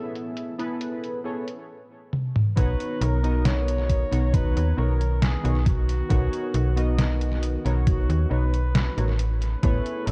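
Nostalgic and dreamy, this vaporwave excerpt drifts at 68 BPM in B major, steeped in an echo-heavy, cassette-tinged haze. It opens on warbling, detuned synth keys with analog chorus and tape echo over a very quiet, silky string machine, while a filter sweep runs through the first 2.6 seconds and a detuned 8-bit drum machine adds low-passed hats, toms and an up-front, medium-tuned snare, closing the intro with a drum fill. At 2.6 seconds the harmony moves from Amaj9 to Bmaj9 and the groove fills out: a snappy FM bass with a metallic, fast attack that then decays sits up front beside a thumpy, sampler-style electronic kick. Over this, a mellow flugelhorn carries the melody with light vibrato, sounding distant and roomy through its own tape echo. The chords return to Amaj9 at 9.2 seconds, and the kick drops out at 9.8 seconds as the rest of the parts carry on.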